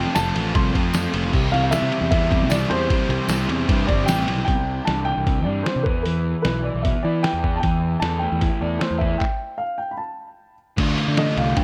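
A dry, close-sounding indie rock excerpt at 152 BPM in C major, wistful yet upbeat, led by a dark, woody upright piano melody with long sustain and analog delay over a punchy fuzz-overdriven bass and a muffled, compressed lo-fi sampler-style kit with a thumpy kick, fat snare, hi-hat, ride, crash and handclaps, while a bright crunchy guitar riff sits in the background, a round, very quiet tonewheel organ with slow rotary and a jingly tambourine add colour early on, a thick fuzz guitar with lush chorus drops out at 4.5 s and returns at 10.8 s on a Dm7, and a stop at 9.2 s breaks up the chord movement from F and C through Cadd9, E5 and A5/E.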